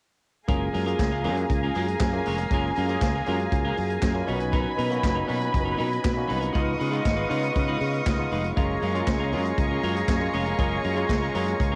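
A straight 4/4 disco groove at 119 BPM in F# major carries this joyful, celebratory excerpt, where a vintage drum kit with punchy kick, handclaps, hi-hat and snare, carrying a cassette-tape tint, drives a growly fingered electric bass beneath a lightly overdriven, barky tine electric piano, a twangy clean electric guitar with warbly pitch drift, a lush vibrato string section holding sustained chords and a floating, pure second string line, all moving through F#maj9, Bmaj7 and C#9 with light reverb and the soft haze of a home cassette recording.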